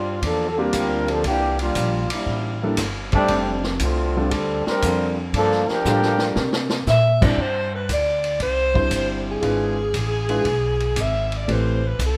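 Big band swing with a swinging, energetic feel, this excerpt opens on a bright trombone section with light vibrato leading over a woody, growly pizzicato upright bass, a vintage drum kit with dark cymbals and a punchy kick, and an intimate grand piano whose action noise is audible, until a drum fill at 5.9 seconds hands the melody to a warm, vibrato-rich saxophone section that enters up front at 6.9 seconds, all within light reverb.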